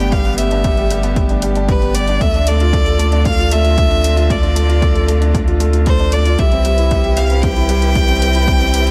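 Piano and strings electronica at 115 BPM in 4/4, intimate and hypnotic, moving through Gadd9, Dm7 and Cmaj7 in this short cut from a longer piece. A felt-muted upright piano plays a mellow riff with audible action noise and delay, beside a biting, nasal solo violin melody that also carries delay, while a distant string quartet holds bowed chords in the background with sidechain pumping. Underneath, a round sine sub bass pumps with the sidechain, and a punchy overdriven electronic kick and an overdriven electronic hi-hat arrive at 0.1 seconds, all set in light reverb and studio ambience.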